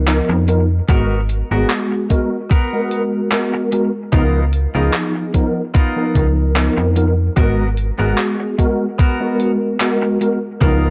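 Vaporwave at a relaxed 74 BPM with a light swing, melancholic and hazy in G# dorian, as a mellow tine electric piano drifts through an ensemble chorus and analog delay over a snappy, metallic FM bass, moving between C#13 and G#m9 chords. A gated 80s drum machine supplies handclaps and hi-hat under gated reverb, while a thumpy, tape-warm electronic kick sits up front from 0.9 seconds. A twangy, picked clean electric guitar riff with lush chorus and delay floats beneath it all, and the whole short cut has a dry, gritty, dulled hardware sound.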